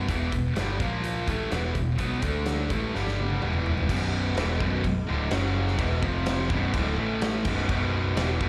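Menacing, aggressive hard rock in B minor at 126 BPM, heard live through a club PA with light reverb, where an up-front high-gain guitar with slapback echo and a very quiet tight distorted guitar drive a picked riff over growly picked bass and a big rock kit with a fat snare, tight kick and bright stone-room sound, passing through a drum fill from 2.9 to 3.9 seconds into a second section where a very quiet, double-tracked overdriven semi-hollow guitar joins at 3.9 seconds, as power chords shift restlessly around a Bm centre.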